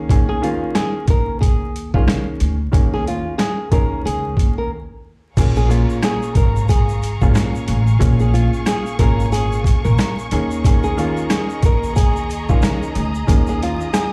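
Heard through vinyl crackle and a large studio reverb as if played on a big sound system in a bare room, this reflective, gritty boom-bap hip-hop cut with a swung 16th feel sets a fingerpicked nylon-string guitar melody with audible finger squeak and slapback echo over dark, mellow grand piano colored by cassette tape, woody pizzicato upright bass, and an up-front, overdriven sampler-style kit with a thumpy kick and high-tuned snare, pausing for a break at 4.7 seconds before a lush, bowed string section with vibrato and portamento and a grainy tube shaker in the background join at 5.4 seconds.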